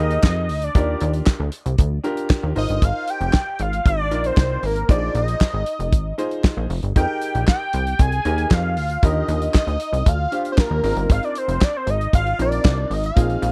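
A fat, detuned sawtooth lead with a sub octave, vibrato, a moving notch filter and tape echo carries the melody up front over a punchy, ring-modulated analog bass, a boxy, intimate grand piano with audible action noise, and a damped drum kit with a fat snare, tight kick, hi-hat and handclaps in this slick, funky early-eighties boogie funk excerpt, recorded close and dry in a 1970s-style studio.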